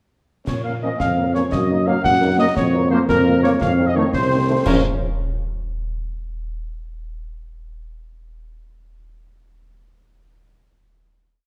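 A resolute, martial wind-band march in 6/8 opens at 0.5 seconds with a dark, softly attacked solo cornet on the melody, mellow woodwinds doubling the tune in unison and sixths, an up-front tuba sounding bass on the beats, and a marching snare over bass drum with dark clash cymbals, joined by distant French horns on after-beat and sustained chords and background trombones with short accented chords, all in a reverberant recital hall before closing on a final chord at 4.7 seconds.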